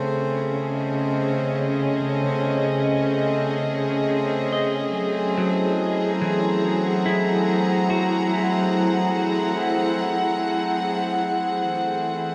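Ambient and luminous, this peaceful fragment cut from a longer piece moves at an unhurried, straight 4/4 pulse. A dark chamber string section sits up front with soft-attack, sul tasto sustained chords, its light vibrato and smooth top giving an intimate, close ensemble sound. Beneath it, a hand-pumped harmonium holds a reedy, breathing drone that stays mellow throughout. At 4.5 seconds a clean electric guitar enters in the background with fingered arpeggios trailing dub echo, and the close of the fragment fades from 9.5 seconds. The harmony drifts from C#sus2 to F#7 before settling on Eadd9 near the end, all bathed in a long plate reverb and an echo-heavy mix with the soft grain of cassette tape.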